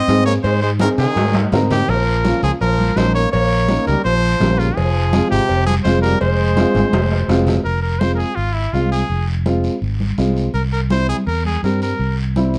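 A brilliant, punchy trumpet with light vibrato and scooped notes carries the melody over a smooth-topped trombone second line in this driving, passionate cumbia fragment, joined by woody vintage upright piano, a round, up-front fingered electric bass, ringing congas, a raspy guiro, and a band-limited metal-shell cowbell and timbales that drop out around 7.6 s, just after the trombone, as the harmony shifts to F harmonic minor and reaches a C7 chord at 10.5 s.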